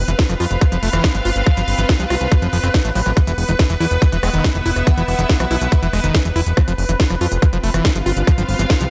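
Lightly reverberant with a digital ambience, this short fragment of a longer psychedelic trance track feels psychedelic and alien, set in a straight 4/4. A tight, up-front electronic kick anchors the groove alongside a techno drum kit of smooth hi-hats, rim clicks and a cracking snare, its tape-tinged sound re-recorded in a small room. Beneath it, a fat, detuned sawtooth analog bass holds the low end, while a squelchy, screaming acid riff, distorted and resonant with a filter sweep, chorus and tape echo, snarls from the background. An evolving wavetable pad morphs through sustained chords from F5 to E5 and back to F5, bathed in phaser and its own reverb, as a distant, biting symphonic string section adds intense bowed texture with light vibrato; the pad, strings and acid line all pump against the kick. Briefly, from 4.2 to 5.5 seconds, a nasal, mellow vowel-sweep wobble bass surfaces as a second line, its formant-filtered sine tone saturated and echoing faintly in the distance.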